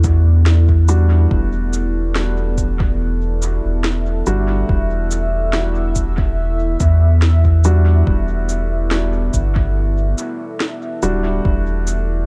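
A dry, echo-heavy mix frames this spacious, deep ambient dub excerpt, which rests on a single Em9 chord. A round, soft sub bass sits up front beneath a moody, detuned sawtooth pad with chorus and its own reverb, while a mellow upright piano plays dark, woody stabs that trail off in dub echo. Electronic cabasa and a produced snare, also treated with dub echo, ride over a layered electronic kick, which drops away at 11.6 s just before the other drums stop at 12.1 s.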